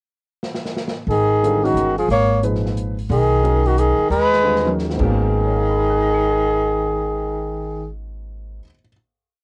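Lightly reverberant home cassette sound frames this hypnotic, cool modal jazz piece in 3/4 at 179 BPM with a swung feel in G# dorian, where an open jazz drum kit with a rolled-off top and a boomy kick keeps time on the hi-hat with sticks and adds fills from 0.4 s, a dark, distant trumpet up front states a motif-based melody of call phrases with light vibrato above a clear tenor saxophone harmony line mostly in thirds, a woody, thumpy pizzicato upright bass on gut strings plays in two, and an intimate baby grand piano with audible action noise comps in syncopated quartal voicings in the background before the group reaches its final chord at 5.1 s.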